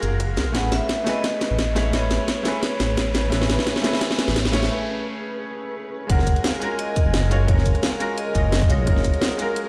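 Played back on a big sound system in a bare stone room, this liquid drum and bass cut carries a light, small-room ambience around a lush, warm mood. A bright baby grand piano with audible action noise and long sustain plays accompaniment through a low-pass filter and digital delay, while a muted, veiled string section holds bowed chords with vibrato in the background, pumping under sidechain compression. A dark, detuned saw bass rumbles up front with a beating, deep tone, and a garage kit of cracking snare, bright hats, rim click and shaker sits forward in studio reverb alongside a tight, high-passed electronic kick. From 0.5 seconds a vibraphone struck with hard mallets rings out a metallic melody with fast motor vibrato, filtered and delayed in a boxy space. A drum fill and an electronic riser drive the build-up until a brief break at 4.7 seconds, and the drop arrives at 6.1 seconds as the harmony settles from Amaj9 back to F#maj9.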